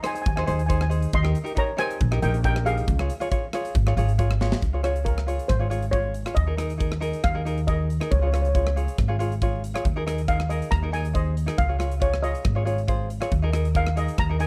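Bouncy and carefree, this calypso excerpt sets a shimmering, mellow steel pan with plate reverb over a fingerpicked tenor ukulele, a growly, woody pizzicato upright bass sitting up front from 0.3 s, and a polished tight metal drum kit whose fill at 4.4 s ushers in a steel pan solo from 4.6 s, in a dark production with little reverb.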